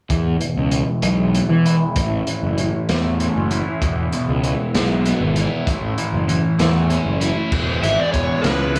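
A dry, echo-heavy studio sound with little reverb frames this short, trippy and hypnotic psychedelic rock fragment in a slow, rolling 6/8, cut from a longer piece. A dark, double-tracked overdriven guitar riff sits up front, colored by a phaser and a low-pass filter, while a fuzz-soaked picked electric bass punches beside it. The crunchy breakbeat kit is gritty and saturated, with dark cymbals, a tight kick, a medium-tuned snare and a rolled-off top, and its hits trail into dub echo. Beneath them a very quiet vintage string machine voiced as cellos holds mellow, sawtooth-edged chords with a slow attack and ensemble chorus. The harmony rocks between E and A while a filter sweep runs until 7.5 seconds, and at 7.8 seconds an overdriven slide guitar, played with fingerpicks and soaked in dub echo, enters with a brief up-front melody.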